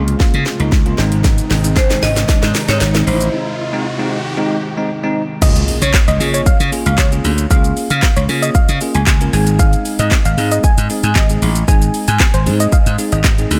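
Set in a light digital reverb, this euphoric, carefree dance-pop excerpt builds on punchy house drums, a bright slap bass and a bell-like electric piano with lush chorus, as a woody hard-mallet marimba melody, a shimmering pulse-width pad and a background riser and impact lead to a drop at 5.4 seconds, where a glassy wavetable pluck takes over the melody above very quiet group handclaps.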